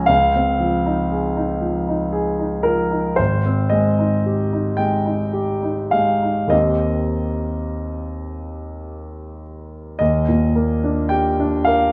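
Moving in a slow, rubato 6/8 at roughly 33-40 BPM counted in dotted quarters, this short passage of impressionist classical solo piano drifts with a dreamy, hazy mood in Eb mixolydian. A concert grand carries everything alone, sitting up front with a clear, open tone, a deep bass and long sustain, spanning from Ab1 up to Bb5. The harmony glides from Fm7/Db through Abmaj7 and Eb6, settling onto Ebmaj7 at 10.0 seconds as a new section begins. A moderate recital hall reverb lends the sound gentle space around the instrument. Cut from a longer piece, the fragment lasts just under 12 seconds.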